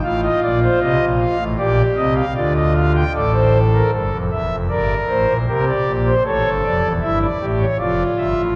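Bathed in a wet church reverb with a 3.5-second decay, this solemn, driving short cut from a baroque-style three-part classical fugue features a solo pipe organ on thick, warm, romantically voiced foundation stops, placed up front and spanning E1 to G5, with the harmony turning from B-flat major to D minor for a new section at 3.2 s.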